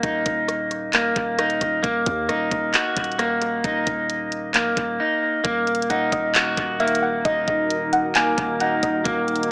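A half-time trap groove at 133 BPM in 4/4 drives this hard-hitting, dark hip hop excerpt in Eb minor, with an electronic kit of knocking kick, bright hi-hats, handclaps and rim clicks sitting up front and trailed by analog delay. Beneath it, a long, deep sine 808-style bass hits with a fast attack and decays across the low register. Also up front, a twangy, fingered electric guitar on the edge of break-up plays warm arpeggios that echo through analog delay. The music drops into a brief silence at 5.0 s, then a soft, round, wave-folded pluck enters at 5.9 s with a second line, colored by chorus and delay. At 6.8 s a moody, detuned ambient pad swells in slowly with sustained chords, thick with chorus and reverb. Light digital ambience and heavy echo give the mix a small-speaker character.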